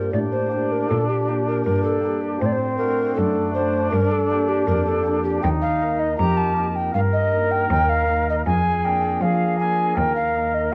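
A mellow, hollow tenor recorder with airy chiff and vibrato carries the melody up front in this flowing, radiant baroque-style sonata excerpt at 79 BPM in 4/4, joined at 0.2 s by a pure, silvery concert flute on a second line, over soft flute-stop pipe organ continuo and a rich, gut-string period cello bass, as the harmony moves from G minor through D7 toward E-flat, heard in a wet recital hall and colored by worn, warbling cassette tape with drifting pitch.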